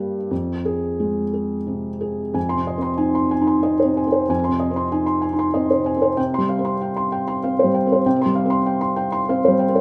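Melancholic and intimate, this short excerpt from a longer neoclassical minimalist piano piece moves in a rubato 3/4 at roughly 85-99 BPM in F minor. A felt-muted upright piano plays alone throughout, soft and mellow with audible action noise, sitting up front in a moderate stone room reverb as it spans F2 to C6. The harmony drifts from Fm to Fm7 at 2.4 seconds and settles on Csus4 at 6.2 seconds.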